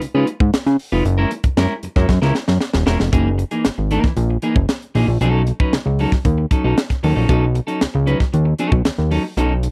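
A fat, saturated analog bass with a filter pluck, a tight funk drum kit with a high-tuned snare, and a clean, picked electric guitar all start together in this gritty, strutting funk excerpt at 115 BPM. They move through Db9 and Gb9 chords until a drum fill at 2.1 seconds leads into a new section at 3.1 seconds, which shifts to Gb13 and then Cb9. The bass sits loudest, and every part is up front in a dry, close 1970s-style studio sound with little reverb.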